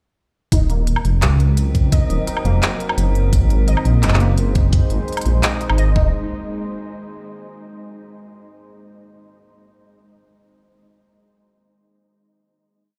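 A dark, tense half-time drum and bass piece opens at 0.5 s on a drop, where a knocking electronic kick sits up front beside a sparse beat of crisp closed hats, a low woodblock and handclaps, all under a rumbling, saturated detuned saw bass holding long notes over chords moving from Ebm to Ab. A warbly, lo-fi pluck repeats a 10-step arpeggio loop that drifts against the bar through ensemble chorus and dub echo, while a moody ambient pad with slow attack and sidechain pumping enters at 1.4 s and an eerie, metallic FM drone holds a high note in the background. The whole thing sounds as if played on a big sound system in a bare room with large studio reverb, closing on a final hit at 6.1 s.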